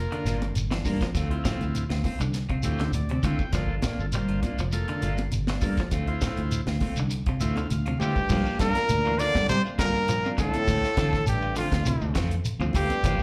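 A tight funk drum kit sets a straight 4/4 afrobeat groove at 101 BPM, its dry kick and medium-tuned snare under bright cymbals, with a grainy shekere and very quiet, high-tuned congas filling in the percussion. The mood is defiant and hypnotic, circling between Gm7 and Dm7 in G dorian, with a round, foam-muted fingered bass sitting up front. A slightly broken-up, twangy guitar plays arpeggios in the background while a clean picked guitar adds stabs through harmonic tremolo, and a buzzy vintage combo organ accompanies until 8.3 seconds, dropping in fills along the way, with a drum fill leading into the second section. At 8.0 seconds a clear, punchy trumpet takes the melody with light vibrato, backed by a tight trombone section with a smooth top playing a second line. Slapback echo colours the organ, both guitars and the horns, and the whole cut carries the club reverb of a live gig heard through the venue's PA, taken from a longer piece.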